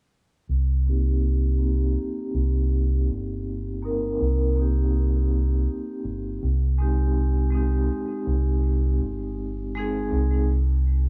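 A dark, round fingered electric bass sits up front in this melancholic, cinematic trip hop piece at 81 BPM in C minor, moving between Cm7 and Abmaj7 from 0.5 seconds, with the change arriving at 6.4 seconds. Behind it, a metallic, ringing vibraphone played with medium hard mallets enters at 0.9 seconds, its motor vibrato and tape echo shimmering in a mid-forward position. The dry, gritty cassette sound carries a small room ambience and a filter sweep throughout this short section cut from a longer piece.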